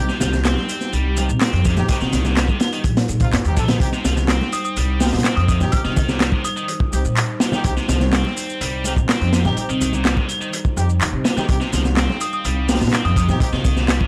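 A straight, funky breakbeat groove in 4/4 drives this gritty fragment from a longer piece, built on a crunchy, up-front drum kit with a punchy kick, medium-tuned snare and hi-hat, all saturated and dark with a rolled-off top. Layered electronic shaker and handclaps with a tape-warm edge sit behind it, while very quiet congas add damped, hard-handed hits. A woody, growly pizzicato upright bass anchors the low end over a single C minor chord, joined by a heavy high-gain guitar riff that is distorted and overdriven, with 12-bit sampler grit and tape echo. A distant, roomy horn section fires tight stabs with light vibrato, and a moody analog pad of detuned square and sawtooth waves holds sustained chords in the background, pumping under sidechain compression with a moving notch. A crystalline FM synth bell drifts in for brief phrases around 4.5 and 12.2 seconds, its decaying notes filtered through a telephone sound, chorus and tape echo, and the whole piece carries a dry, hardware-saturated character.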